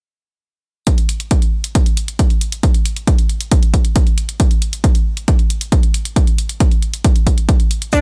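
A straight 4/4 pulse at 136 BPM drives this bittersweet, soaring uplifting trance excerpt, tuned to A4 = 439 Hz, with a punchy, dry electronic kick up front and quieter, sidechain-pumped analog hi-hats in a small room from 0.9 s, before a detuned, warbling sawtooth pluck arpeggio around D4, colored by chorus, cassette tape and sidechain pumping, arrives at 7.9 s alongside a grainy egg shaker in the background.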